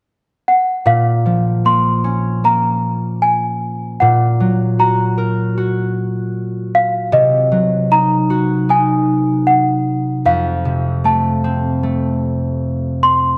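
Wistful and dreamy, this short lullaby excerpt in Bb minor drifts at 76 BPM as a delicate, bell-like small celesta carries the sweet melody from 0.5 seconds, joined at 0.9 seconds by a bright, fingerpicked concert harp ringing out the accompaniment through a Bbmadd9, Gb/Bb, Cdim and F progression, both up front in a dark production with a moderate scoring-stage reverb.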